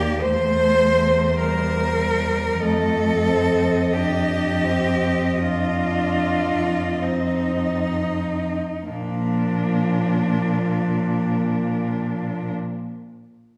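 Lyrical and warm, this short excerpt from a longer classical piece for four cellos unfolds in Bb major at a slow, rubato pace between 30 and 52 BPM in 4/4, easing back in tempo over its first 8.9 seconds. The melody cello sings in its upper register with a smooth, even, vibrato-laden tone that sits distant in the blend, while a second cello carries a focused inner line placed close and up front. Beneath them, a third cello supplies bowed accompaniment with a concentrated, vibrant sound, and a fourth anchors the bass, also close and forward. The harmony moves from C7/E to F7 before settling on Bb as a new section begins at 8.9 seconds. A resonant recital hall surrounds the ensemble, heard from further back in the room with a reverb tail of about 1.5 seconds.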